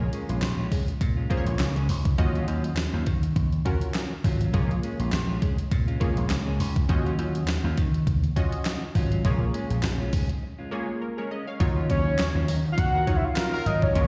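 Swung sixteenths in 4/4 drive this funky, late-night early-eighties boogie funk fragment, with a crisp, overdriven 8-bit drum machine of handclaps, hi-hat, thumpy kick and snare sitting up front beside a punchy, amped vintage slap bass. A detuned sawtooth polysynth comp with filter sweeps and a clean, picked electric guitar riff, both treated with chorus and slapback echo, ride a Bbm7 to Ebm9 vamp until a break at 10.4 seconds. From 11.6 seconds a shimmering, very quiet pulse-width pad holds sustained chords, a fat, saturated analog lead with vibrato takes the melody from 11.9 seconds, and a clear horn section adds a short second line at 12.9 seconds, the mix heard as a live gig through a venue PA with recital hall reverb.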